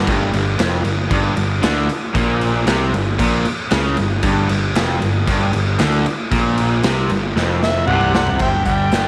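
Three guitars and a fuzzed electric bass open this driving, confident classic rock excerpt together on a G5 power chord, with a raw garage drum kit joining almost at once at a straight 115 BPM in 4/4. Up front, the drums sound punchy and saturated in a bright stone room that pumps, with a medium-tuned snare, crash, hi-hat and toms. The picked bass sits equally forward, overdriven and fuzzy. Behind them, a compressed distorted electric guitar and a double-tracked, hollow-body semi-hollow guitar pick through the riff, while a crunchy overdriven guitar sits very quietly underneath. A drum fill from 7.4 seconds leads into an overdriven, amplified harmonica solo at 7.6 seconds, gritty with light vibrato, tongue slaps and scooped notes. The semi-hollow guitar drops out at 8.4 seconds as the harmony moves to a G chord, all under light reverb.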